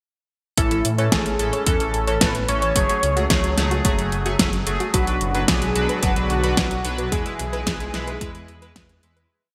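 At 0.6 seconds this short, romantic and uplifting synthwave piece starts all at once, with a thick, bold unison lead singing a motif-based melody through digital delay. Beneath it, a retro, glossy chorused polysynth plays pulsing gated chords, and a soft, round pluck runs a gentle four-step arpeggiated sequence in the background, softened by chorus and delay. A dark detuned saw bass drives steady eighth notes with a deep, rumbling tone and sidechain pumping, while an overdriven, punchy machine kick and an up-front pop kit with a fat snare and metallic hats lay down a classic 80s backbeat. At 4.9 seconds a smooth, evolving supersaw pad slips in underneath with analog chorus and its own pumping. The whole verse sits in a lush hall reverb with a bright 1980s digital sheen and fades out from 6.4 seconds to the end.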